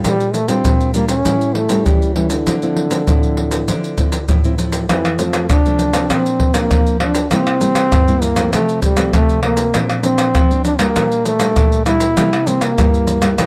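A breathy, whispered jazz-style trombone carries a yearning, nostalgic samba-choro melody with light vibrato and scooped notes at 99 BPM, over thumb-plucked classical nylon-string guitar with audible finger squeak and a compressed, saturated up-front bed of maracas, tight surdo, pandeiro and tamborim, moving from D minor to F major at 4.9 seconds in a dry, close 1970s-style studio sound.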